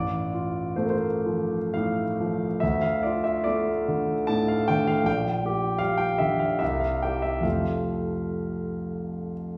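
A concert grand piano opens this brief passage on its own, playing a tender, serene romantic nocturne in triple metre with a freely breathing rubato. The harmony moves from F over A to D minor at 2.6 seconds, then through G minor over B-flat and a bare C fifth before settling back on F near the close. The piano has an intimate, polished tone, with deep bass, long sustain and audible action noise. It sits present and up front, while a reverberant recital hall, heard from further back, adds a soft halo of small-room ambience. The passage runs 9.6 seconds and is taken from a longer piece.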